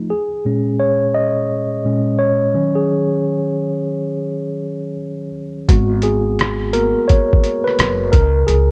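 This lo-fi hip hop piece is nostalgic and melancholic, moving at 86 BPM in 4/4 with a swung sixteenth-note feel in G# minor, tuned slightly below standard pitch. It is cut from a longer piece. A mellow tine electric piano plays alone at first, clean and close, with a low-pass filter softening its top, moving from A#m7 to D#m7. At 5.7 seconds, as the harmony shifts to G#m9, an upright bass and a sampler-style drum kit join the piano. The bass is plucked, with a woody, dark gut-string tone. The drums sit up front with hi-hat, a thumpy kick and rim click, sounding compressed, pitched down, muffled and overdriven, with gritty 12-bit sampler character and the colour of a small room. Light digital reverb and a worn, warbling cassette-tape drift colour the whole recording before it stops at 8.7 seconds on a C#5 chord.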